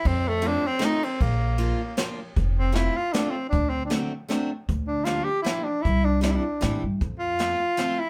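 A breathy tenor saxophone and a brushed jazz drum kit open this musette waltz, cut from a longer piece, with upright bass joining at 0.1 s and picked steel-string acoustic guitar at 0.4 s. Set in F major at 155 BPM in 3/4 with a gentle swing on the eighths, the music feels whirling and nostalgic. The saxophone carries the melody up front in a whispered, intimate voice with a soft attack and vibrato. Beside it, the forward pizzicato bass sounds woody and thumpy on gut strings. The guitar supplies bright accompaniment with fresh strings and audible finger squeak, while the drums add an airy touch with dark cymbals, a boomy kick and a medium-tuned snare. The band plays live together in a small room with moderate reverb, moving through chords such as F7, Bb, D7 and Gm7/D before arriving at F.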